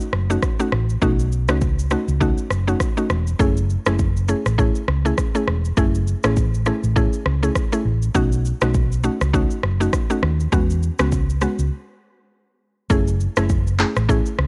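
A woody, detuned mallet-like synth pluck with chorus moves through B9, F#m9 and E6 over a dark, hollow-body fingered electric bass and a gritty, sampler-crunched afro-pop drum kit of deep kick, handclaps, rim click and shaker, in this sultry, hypnotic afrobeats excerpt at 101 BPM with a swung sixteenth feel and a dry, cassette-tape sound, reaching a break at 11.7 seconds before a new section arrives at 12.9 seconds.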